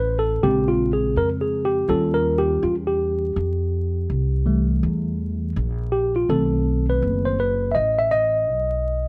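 Dark, crackling vinyl grit and light reverb frame this relaxed, cool jazz-hop snippet with a swung sixteenth feel, where a worn, slightly out-of-tune tine electric piano takes a mellow, up-front solo over chords moving from Bbm7 through Eb9 and Fmaj9 to B7b9, while a woody, warm pizzicato upright bass holds down the low end throughout the 9.1 seconds.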